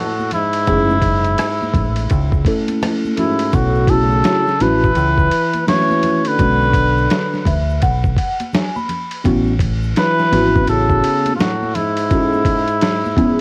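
A cup-muted trumpet leads this smoky, mellow jazz-hop clip from a longer hip hop piece, its veiled, breathy tone carrying light vibrato and scooped notes up front through cassette-tape colouring and analog delay. A dark, whispered trombone plays a second line beneath it from the start, also breathy with scooped notes and a soft attack. At 84 BPM in 4/4 with a 62% swing on the sixteenths, a gritty, overdriven sampler-style drum kit with a thumpy kick, medium-tuned snare, hi-hat, ride and rim click sits up front, while ringing congas and egg shaker played with soft hands stay in the background. From 0.7 s a mellow tine electric piano with phaser moves through chords such as F#m9, B9sus4 and A69, adding a fill from 7.1 to 9.3 s, and a round, punchy dub bass plays alongside until 11.0 s. Vinyl crackle, light reverb and the feel of a home cassette recording give the whole piece a smoky, mellow character.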